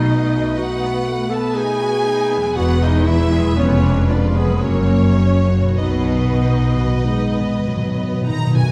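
Classical orchestral writing in a slow romantic vein, this short passage moves in 3/4 at 48-62 BPM with a warm, lyrical mood and flexible rubato in B major. A bowed violin section carries the melody with rich, smooth vibrato, while a second violin line, a dark solo clarinet and a viola section in the background weave supporting parts around it. A French horn section holds soft-edged sustained chords beneath, and a concert harp adds ringing, very quiet fingerpicked arpeggios. Lush cellos and a distant double bass section anchor the bass until 6.8 s, and close timpani on medium mallets play a fill from 5.8 s through the end at 8.7 s. The harmony passes from B7 through Emaj7, Fdim7 and F# back to B, set in a moderate scoring-stage reverb with a layer of vinyl crackle.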